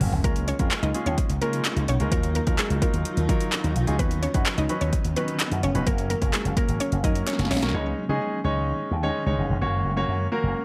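A straight 4/4 dance-pop groove, upbeat and carefree, rides on an overdriven deep house drum kit with a deep kick, punchy snare, metallic hats, handclaps and toms, up front beside an amped, bright slap bass pushed through an envelope filter. A clear, polished baby grand piano plays the accompaniment, and a mellow, blurred granular cloud pad holds sustained chords in the background; both pump under sidechain along with the bass. A woody, round mallet-like synth pluck with chorus and tape echo carries the melody, and a very quiet, crisp group handclap adds human texture, until a drum fill at 7.3 s leads to the kit dropping out at 7.8 s, leaving piano, pad and bass in a dry mix as this cut from a longer piece ends.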